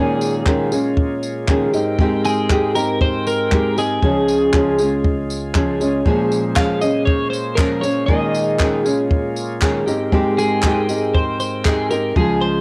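A bright, clean twelve-string electric guitar carries the melody, its picked lines compressed and up front with a cassette-tape tint. Beneath it, a full-bodied nylon-string guitar is fingerpicked in a deep classical style, while a reedy tonewheel organ holds sustained chords with audible key click through a slow rotary speaker. A compact cocktail drum kit, dry and natural with a punchy kick, handclaps and tambourine, enters at 0.2 seconds and closes with a short fill at 12.2 seconds. From 6.6 seconds a crisp group handclap joins in the background, sounding distant as if in a large room. This sunny, easy-going acoustic pop passage has a gentle swing, moderate spring reverb and the homespun character of a cassette home recording, cut from a longer piece.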